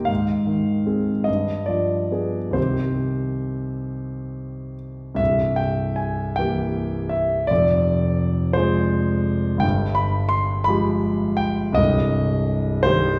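Wistful and melancholic, this short excerpt from a longer romantic nocturne is played on solo piano in C minor, moving at a slow, rubato 44-58 BPM in 6/8. The concert grand has an intimate, vintage character with deep bass and a smooth tone, and the noise of its action can be heard up close. It spans from C1 to C6 across the full 13.2 seconds, the piano sitting up front even as a wet recital hall reverb with a 1.5 s decay places the listener further back in the room. The harmony opens on Ab6 and G7b9 before settling on C minor, then a second passage beginning at 5.2 seconds turns through C7 and F minor. It returns to G7b9 and comes to rest on C minor at 11.8 seconds.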